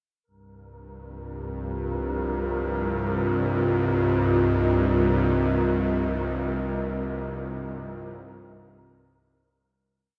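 In free time, this short, complete dark ambient drone piece, tuned to A4 = 444 Hz, feels desolate and ominous, opening at 0.9 s with a faint, breathy wind-like noise texture holding a high Bb4 under shimmer reverb. A tense, nasal bowed-like drone with vibrato sits up front on low notes from 1.1 s, while a deep, moody analog pad of detuned sawtooth and triangle with a sub octave carries slowly shifting chords over Eb69/C through chorus, phaser and shimmer reverb. A cavernous cathedral reverb hangs over the whole piece before the fade-out that begins at 5.2 s.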